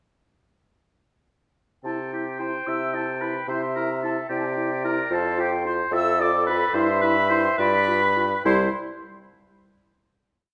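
A quick, cheerful classical-period movement for wind quintet in C major, a spirited 6/8 at 73 dotted-quarter beats per minute with an uneven lilt, heard as a whole short piece in a wet recital hall. From 1.8 seconds the airy, softly attacked concert flute carries the melody while the oboe, with vibrato, doubles the tune at the octave. The clear, vintage-toned clarinet adds a counter-melody and sustained chords, and the dark, distant French horn supplies repeated notes. Up front, the bassoon, with a light vibrato, lays the bass on the beats before the group settles on a final C chord from 8.5 seconds.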